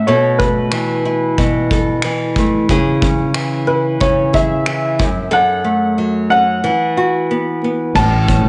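The recording sits in a small room with light reverb, and its top end is gently softened, giving it a mellow, close feel. This heartfelt, sunny acoustic pop passage, cut from a longer piece, is led by an upright piano carrying the melody, its woody, intimate tone slightly detuned, smooth and vintage, with audible action noise. Beneath it, an up-front, fingerpicked nylon-string guitar plays warm, small-bodied accompaniment through Esus4/B, C#m, F#m and Esus2 before arriving on A. A loose indie drum kit joins at 0.4 seconds with a punchy kick, dark crash cymbal, finger snaps and shaker, sounding up front in a pumping studio room with a rolled-off top. In the final moments, at 7.9 seconds, a fingered electric bass enters with a bright, growly, direct and amped sound.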